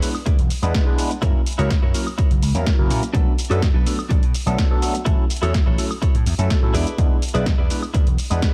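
A straight pulse drives this short, groovy filtered disco house clip, with a punchy electronic kick sitting up front from 0.3 s alongside an analog drum machine supplying hi-hat, shaker, punchy snare and woodblock, its hats and percussion pumping against the kick. The vintage slap bass arrives at the same moment, amped and tube-saturated, carrying the low end with a warm, punchy weight and its own sidechain pump. An overdriven tine electric piano comps through a combo amp, its barky, gritty tone swirling through a phaser and breathing with the pumping. Over it, a clean electric guitar recorded direct plays a bright, picked, compressed riff that also ducks with the kick before dropping out at 8.2 s. The harmony moves from E7 through F#7, Bm7 and A6 back to E7, all set in a digital ambience.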